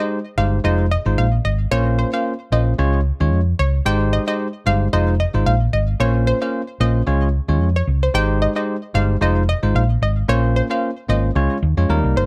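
Joyful and breezy, this afrobeats excerpt sets a full-bodied, chorused analog pluck melody with a sawtooth edge over a bright, bell-like tine electric piano bathed in plate reverb, while a dark, punchy hollow-body electric bass sits up front from 0.4 seconds as the swung groove cycles through Abmaj7, Fm7, Bbmadd9 and Db.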